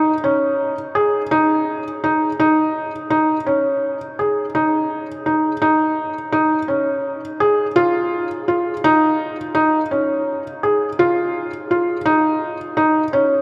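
Playful and shimmering, this contemporary instrumental excerpt in 9/8 features a solo felt-muted upright piano, soft and intimate with thin felt, short sustain and audible action noise, sitting up front in its narrow middle range while a wet cathedral reverb carries its notes into a vast, echoing space.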